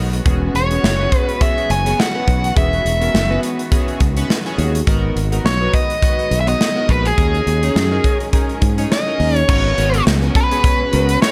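Early-eighties boogie funk with a danceable, slick feel, this short excerpt from a longer piece rides a lightly swung sixteenth-note groove in 4/4. A punchy, growly fingered electric bass sits up front beside an airy, polished acoustic drum kit with a punchy kick, a medium-tuned snare, hi-hat and crash cymbal, all bathed in gated reverb. A retro, glossy chorused polysynth built from pulse and sawtooth waves supplies sustained accompaniment with pulse-width modulation and a filter sweep, while a lush, bowed string section holds smooth chords in the background. From 0.6 seconds a nasal, overdriven lead guitar with a parked wah carries the melody up front, its picked notes trailed by tape echo. The harmony moves through E69, G#m9 and D#7sus4 before settling on G#m11 at 9.5 seconds as a new section begins, all set in a studio reverb.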